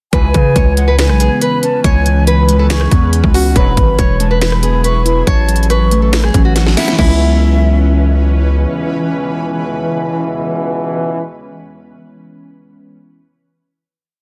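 Eerie and hard-hitting, this half-time trap piece sets a small, fingerpicked nylon-string guitar loop against a sparse, airy flute counter-melody, both carrying tape echo, over glassy digital keys arpeggiating a pedal note in eighths and a blurred granular cloud pad that enters at 1.5 seconds. Up front, a distorted, saturated 808-style bass holds long sub notes with pitch slides beneath a trap drum kit of hard-clipped kick, sharp snare layered with finger snaps, crisp hi-hat rolls, rim clicks and crash, which ends with a fill at 6.6 seconds. Vintage brass ensemble stabs punctuate the loop and keep stabbing through the final chord from 7.0 seconds, after which the keys ring on alone to the close, the whole piece sitting in a dense, heavily limited master.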